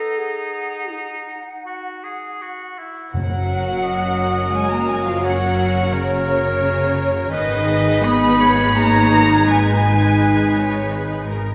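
A wet scoring-stage reverb sets this moving, uplifting film-score excerpt further back in the room, where clear, distant oboe, a mellow clarinet and an airy, hollow flute open in rubato 3/4 at around 79-88 BPM, the clarinet dropping out at 2.8 s. At 3.1 s the music settles into F# major as veiled, con sordino violins take the melody with vibrato, backed by a lush second violin line, background violas, dark muted cellos and close double basses, while a mellow French horn section holds sustained chords. Soft-mallet timpani with a round calf-head tone mark the arrival before falling away at 4.2 s, and the harmony turns toward G#m at 7.3 s.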